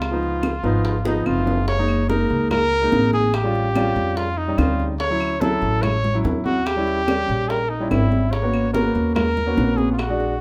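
A sunny, danceable Afro-Cuban jazz excerpt at 144 BPM opens with a smooth-topped solo trumpet singing the melody with light vibrato over a dark, thumpy gut-string pizzicato upright bass up front, while ringing high-tuned congas, tight saturated bongos and woody, vintage claves sit in the background, an intimate grand piano with audible action noise and long sustain joins at 0.1 seconds, and after a drum fill from 1.1 to 1.7 seconds the band moves into a new section wrapped in club reverb.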